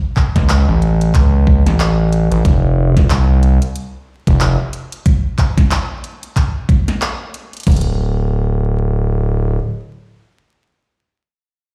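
A gritty, aggressive synth bass with a square-wave bite, a moving notch and tube saturation anchors this swaggering glitch hop excerpt, riding a knocking, overdriven electronic kick and a pop kit of deep snare, handclaps, hi-hat and crash through a swung drop until both drum parts stop at about 7.8 seconds and the bass carries on alone to 9.6 seconds, all set in a bare, reverberant room with vinyl crackle.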